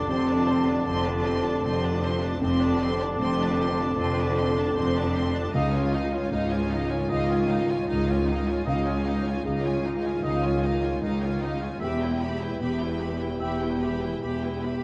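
Violins carry the melody high in their range, their tone rich and focused with a lush, bowed vibrato, in this longing, bittersweet cinematic passage cut from a longer piece. It moves at 77 BPM in 4/4 with a rubato feel, the harmony shifting through F6, Dbadd9 and Em. Beneath them, a second violin section plays a smoother, more distant line, while an airy, hollow flute section and a solo oboe, distant and roomy in classical style, add further inner lines. A soft, felt-muted upright piano sits in the background with audible action noise, as violas fill the accompaniment and a dark French horn section holds sustained chords. Cellos with a smooth top and an intense, clear double bass section enter at 0.1 seconds to anchor the low end. The whole is bathed in moderate scoring stage reverb and colored by worn, warbling cassette tape with drifting pitch and a dulled top.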